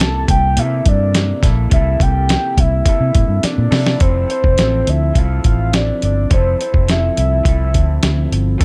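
A dark, warm production with digital ambience frames this laid-back, nostalgic bedroom-pop excerpt in F major, moving at a relaxed 105 BPM in straight 4/4. Up front, a dusty soul sampler-style drum kit gives gritty, tape-warm hi-hat, a thumpy kick and a medium-tuned snare, with a drum fill from 3.4 to 4.0 seconds. A vintage fingered electric bass sits just as close, sounding foam-muted, round and punchy. Behind them, an electric guitar through a small old amp plays picked accompaniment with a twangy, slightly broken-up tone, a subtle chorus and a warbly pitch drift. On top, a soft octave-layered synth lead carries the melody in a full, sine-and-triangle voice with a sub octave, vibrato, lush chorus and slapback echo, stopping at 8.3 seconds. The harmony moves from C13 to Fmaj7 at 4.0 seconds, where the first section gives way to the second.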